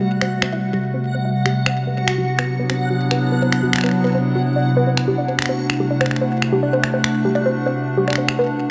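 Intricate and cerebral, this IDM excerpt moves at 145 BPM in a straight 4/4, cycling through Am7, D13 and C69 inside a moderate echo chamber. A nostalgic, warbling tape-like pad holds dark sustained chords up front with chorus and phaser, while a dusty, lo-fi pluck plays arpeggios through a filter sweep and dub echo, and a reversed, dreamy texture swells behind them. Tape-warm electronic finger snaps enter at 0.2 s, sitting close with a digital delay.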